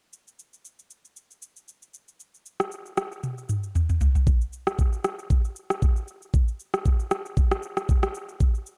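A knocking kick drum sits up front in this electronic, produced afro-pop drum kit, which carries the whole recording alongside rim clicks, shaker and toms. The groove is amapiano at 116 BPM in 4/4, with a 55% swing on the sixteenths that gives it a hypnotic, deep pull. A drum fill from 3.2 to 4.3 seconds leads from the opening section into the second, which runs until 8.8 seconds. The production is dark and warm, with a light reverb around the kit. It plays as a short cut from a longer piece.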